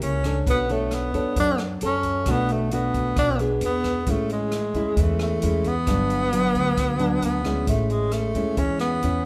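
Bossa nova in A major at 133 BPM, romantic and sunny and cut from a longer piece, led by a breathy, mellow tenor saxophone up front that carries the jazz-style melody with vibrato, soft attacks and scooped notes, over a thumb-plucked classical nylon-string guitar with audible finger squeak moving through Bm9, E7, Amaj7 and Gmaj7, a woody, thumpy pizzicato upright bass, and an open jazz drum kit of hi-hat, rim click and boomy kick, the ensemble heard in the moderate reverb of a recital hall.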